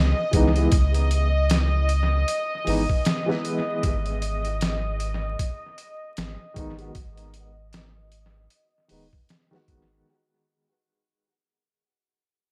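A dark, distant string section and a round, deep analog bass open this melancholic trip hop fragment together, the bowed strings holding a filtered D#5 with light vibrato and a reedy, gut-string tone while the bass sits up front in its low register. At 0.3 seconds a mellow, woody upright piano joins with accompaniment colored by tremolo and tape echo, alongside a gritty, pitched-down sampler-style drum kit. The kit is compressed and tape-warm, with a thumpy kick, a medium-tuned snare and hi-hat placed up front, dressed in studio reverb and analog delay. At a slow 77 BPM in 4/4 with a light sixteenth-note swing, the harmony moves from C#m7 to G#m at 3.8 seconds. The mix is echo-heavy, set in a small room with vinyl crackle, and the whole cut from a longer piece fades out across its ten seconds.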